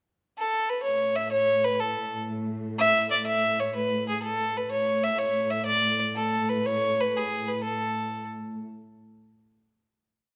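Lively and cheerful, this short Celtic folk jig in 6/8 moves with a straight, buoyant lilt. A single fiddle carries the melody from 0.4 s, its reedy gut-string tone sitting up front as it spins a motif-based tune shaped in balanced period phrases. Beneath it, a muted studio string section enters at 0.9 s to hold a bowed drone, its con sordino sound dark and veiled, with vibrato and a smooth top. The ensemble sits well behind the fiddle, and a moderate recital hall reverb lends the performance a natural sense of space. After a brief pickup and a single statement of the tune, the piece closes on a final hit at 8.6 s.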